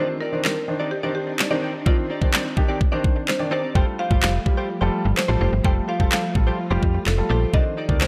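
A light reverb surrounds this driving, energetic dance-pop fragment, where a buzzing, woody marimba struck with hard mallets carries the melody through tape echo over a deep-toned concert grand piano, silky string-machine chords pump in the background, and a clean, direct-recorded electric guitar riff is colored by analog chorus, while a layered electronic pop kit with a knocking kick, fat snare and handclaps arrives at 0.4 seconds and a snappy, metallic FM slap bass pumps in from 3.8 seconds.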